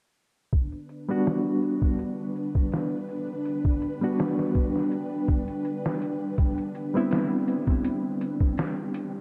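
Soaked in cavernous cathedral reverb, this dreamy trip hop excerpt moves at 82 BPM in a smoky, hypnotic mood, shifting from Gmaj7 to Cmaj9 at 6.4 s. Up front, a gritty, pitched-down sampler-style drum kit with a thumpy kick and filtered hi-hats sits beside a dark, full-bodied string machine cello section holding sustained chords with ensemble chorus. A reedy, worn electric piano, slightly out of tune and carrying fast tremolo and tape echo, joins at 1.1 s, and from 2.7 s an airy, breathy wind-like noise texture drifts in the background.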